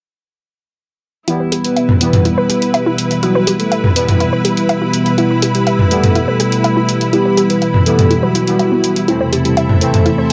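Melodic techno at 123 BPM in E minor, dark and driving, this excerpt moves from Em to Am/E at 9.1 seconds under a light reverb and a dark production. A round, sub-octave synth lead with chorus, phaser and vibrato carries the melody while a filter sweep runs across it, over an evolving, resonant pad of sustained chords, fat brassy synth stabs with chorus, and a biting symphonic string section bowing a lush texture high above. Up front, a punchy analog drum machine re-recorded in a small room drives hi-hat and toms, while a detuned sawtooth unison pluck sits in the background, spinning arpeggios through cassette tape, dub echo and its own filter sweep.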